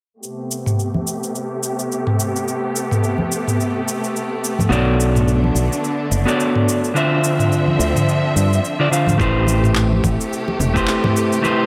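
A moderate plate reverb gives this short cut from a longer sunset chillout piece a soft, airy sheen, setting a relaxed, smooth mood at 107 BPM in A minor with a gentle swing on the sixteenths. A lush, bowed symphonic string section holds sustained chords with vibrato from the start, its clear, focused tone sitting distant yet up front under a low-pass filter and a filter sweep that runs until 9.2 seconds. Alongside it, an overdriven R&B drum kit with handclaps, shaker and toms gives a produced, electronic feel with a small-room character, and at 0.9 seconds bright congas played with soft hands join in the background. At 4.7 seconds a clean, dark electric guitar arrives up front with delay, joined by a round fingered bass carrying tube saturation, as the harmony moves from Am9 through Bm9 and Dm9. At 9.2 seconds the piece returns to Am9 and a gritty, thumpy electronic kick drum adds compressed weight to the groove.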